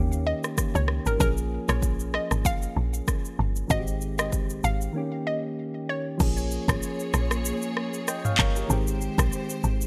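Under light reverb, this mellow afrobeats excerpt at 96 BPM in Bb dorian sets soft, round electric-piano-like synth keys with chorus over a woody, punchy log drum bass and an up-front electronic kit with deep kick, handclaps, rim clicks, shaker, toms and crash; a hollow, bouncy square pluck with chorus and delay carries the melody from 0.3 to 6.0 seconds, and a lush, bowed studio string section holds sustained chords from 6.2 seconds over a Bbm7 to Abmaj7 progression.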